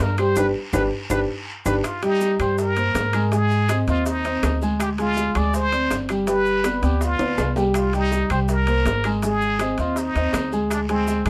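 Sultry and danceable, this Cuban son and guajira passage in C minor at 162 BPM opens with a brilliant, wah-wah plunger-muted trumpet solo over its first 1.8 seconds, and the trumpet carries the jazz-style melody up front over a dark grand piano's mellow, long-sustained arpeggios with audible action noise and a thumpy gut-string pizzicato upright bass, while round low-tuned bongos, ringing metal-shell timbales, woody claves, a raspy distant guiro and grainy maracas sit in the background of a small, detailed room, with drum fills at 1.1 and 7.2 seconds.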